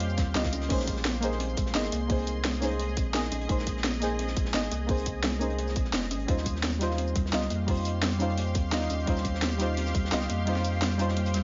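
Dreamy and melancholic, this liquid drum and bass excerpt at 172 BPM drifts over Eb13 and Bbm11 chords as nasal, filter-plucked chord stabs with chorus, tape grit and digital delay sit beside a shimmering, detuned ambient pad that pumps, a woody kalimba rings out echoing arpeggios, a thick saturated sub bass holds the low end up front, a cracking up-front drum and bass kit with crash, hi-hat, shaker and snare rides over a gritty breakbeat kit tucked in the background, and a tight layered electronic kick plays from 0.2 to 10.0 s, all within a lightly reverberant, softly rolled-off mix.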